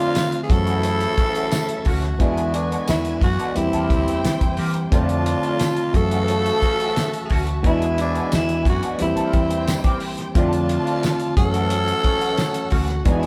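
A straight 4/4 groove from a dry, fat-snared 70s drum kit, a jingly tambourine and a dark, round, foam-muted bass carries this smooth, romantic slice of lush 1970s-style soul, where a raspy, growling tenor saxophone with scooped notes sings the melody up front over a worn, slightly out-of-tune, lightly overdriven electric piano, a twangy, wah-coloured guitar riff, nasal straight-muted trombone stabs and distant bowed strings with expressive portamento, the band captured live in one large studio room.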